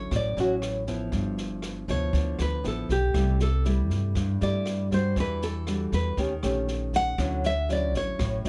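A fingerpicked nylon-string guitar carries the melody up front with a full-bodied tone and audible finger squeak, over a second thumb-plucked nylon-string guitar's chords, a woody pizzicato upright bass and an open jazz drum kit of boomy kick, rim click and snare sitting lower in the mix, in this breezy, sunny bossa nova excerpt at 119 BPM, captured closely with little reverb as the harmony travels from Dmaj9 through G13, C6, Em9 and D#7#11 back to Dmaj9.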